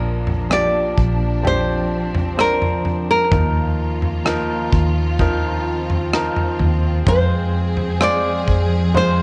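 This melancholic, emotional pop ballad excerpt moves at a slow 64 BPM in 4/4, with a bright, full-bodied nylon-string guitar carrying the fingerpicked melody up front with a slapback echo. A clear, polished baby grand piano and a warm, bowed string section playing sul tasto with vibrato and a soft attack support it, while a dark, foam-muted, round electric bass holds the low end. A smooth, small-room drum kit of tight kick, rim click and toms joins at 0.3 s, all within a studio reverb over chords moving from Bb to Ebsus2 to Fm.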